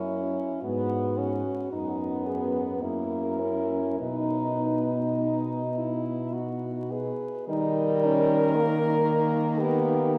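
Classical and lyrical, this serene excerpt from a longer piece sets a quartet of French horns in a slow, rubato 3/4 in B major, with a warm lead voice carrying the melody over a clear second line, a distant, roomy accompanying horn with a soft attack, and a mellow, close-miked bass horn sitting up front with vibrato. The harmony moves from G#m through B/F# and F#7 to B, with a new section arriving at 7.5 seconds on D#. A wet cathedral reverb from a church or concert hall surrounds the ensemble, and vinyl crackle colours the sound.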